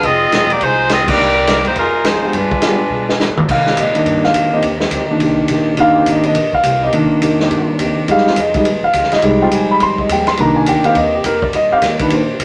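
A tight, edgy saxophone section opens this brassy, sultry big band swing excerpt in C minor, stating the melody up front with light vibrato and a soft attack before dropping out at 3.2 seconds. Underneath at 209 BPM, a swinging drum kit in a big, natural room drives the groove with a punchy kick and medium-tuned snare. A woody, growly pizzicato upright bass and a very quiet, dark picked acoustic guitar hold down the harmony through Fm7, Cm7 and G7b9 changes. The concert grand piano, entering at 1.1 seconds with deep bass and a natural tone, takes over with a solo from 3.5 seconds to the end after a band accent and a short drum fill. Behind it, a mellow trombone section with a smooth top sustains chords in the background, all set in a wet studio ambience.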